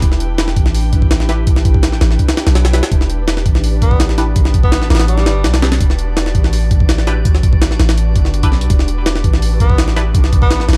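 A straight 166 BPM drum and bass groove in 4/4 drives this nostalgic, atmospheric jungle excerpt in E minor, where a gritty, pitched-up sampler-style kit with a thumpy kick and medium-tuned snare sits up front beside a deep, mellow 808-style sine bass, while a glassy, chorused texture drifts in the background, muted filtered dub chord stabs with phaser and dub echo enter at 1.3 seconds, and a breathy tenor saxophone with vibrato appears at 3.8 and 9.6 seconds, all within a dark production dusted with vinyl crackle.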